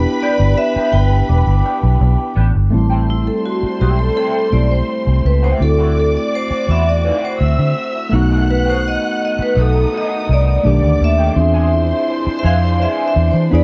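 Soul with a bittersweet, cinematic mood, cut from a longer piece, where a round, punchy, foam-muted electric bass sits up front under a worn, slightly out-of-tune tine electric piano with light overdrive, while veiled con sordino strings play a distant second line and stopped, nasal French horns hold sustained chords in the background. A hard-mallet vibraphone carries the ringing melody and takes a solo from 2.7 seconds, with a soft-mallet vibraphone adding mellow texture from 1.3 seconds and a twangy, slightly broken-up guitar riff with wah and analog chorus tucked behind. The dark production is set in a small room with light reverb, moving from Em7 through Am7 and D9 to altered dominant chords.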